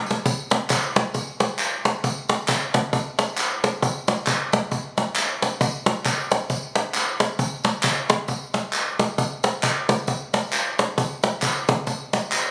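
Hopeful and reverent, this short gospel passage is cut from a longer piece and moves at 134 BPM in 4/4 with a lightly swung eighth-note feel. It opens on a drum fill at 0.0 seconds, and the cajon then carries the groove from 0.1 to 12.4 seconds with a woody, acoustic tone and faint snares, heard close, dry and up front. Tambourine and handclaps run over the same span, blending a tube shaker with a group handclap that sounds distant, as if in a large room, while still sitting forward in the balance. The whole recording is bathed in a wet echo-chamber reverb and carries the studio ambience of a phone captured in the room, with compression holding it together.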